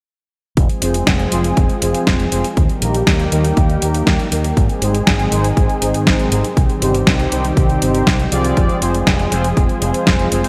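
A punchy, layered electronic kick drum leads this danceable, melodramatic italo disco excerpt in F minor, tuned slightly flat to A4 = 436 Hz, and moving at a straight 120 BPM in 4/4. Beside it, a sampler-style 12-bit drum machine sits up front with hi-hat and an overdriven, medium-tuned snare, while a bright, fingered electric bass with an envelope filter and tube saturation holds the low end. A lush, thick unison pad of detuned sawtooth voices supplies slow-attack sustained chords with a warbling vintage chorus. Bold, fat analog synth brass stabs enter at 0.8 s, carrying vibrato, chorus, delay and a filter sweep, while a filter sweep on an analog polysynth runs from 0.6 to 10.5 s. The harmony moves from Fm through Eb, Ab and Cm before returning to Fm at 8.6 s. Everything sits in a lush hall reverb with a bright, 1980s-style digital production sheen.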